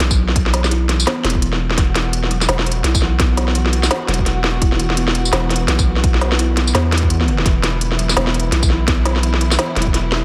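This dark, cinematic piece of half-time drum and bass opens with a buzzing, ringing kalimba playing close-miked, dry arpeggios through a digital delay. It sits in the background over a deep, mellow sine-toned 808-style bass whose long notes decay after a fast attack. An up-front drum kit, re-recorded in a large room, brings a woody snare, crisp hi-hats and tambourine with a swung sixteenth-note feel. A hard-clipped electronic kick drum joins at 0.1 seconds. At 1.8 seconds, a lush studio string section with vibrato and a smooth top enters in the background, holding bowed chords that carry vintage 12-bit sampler grit and sidechain pumping. The mix stays dry overall, and the excerpt is cut from a longer piece, resting on a single Esus2 harmony throughout.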